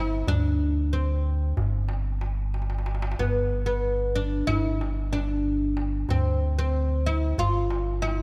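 A woody, fretless oud plucked with a plectrum opens this melancholic, longing makam excerpt in 9/8 alongside a full, sine-and-triangle sub bass with an added octave, then a crisp metal-shell darbuka played with soft hands joins at 0.3 seconds and plays a fill from 2.5 to 3.2 seconds, all within a touch of light reverb.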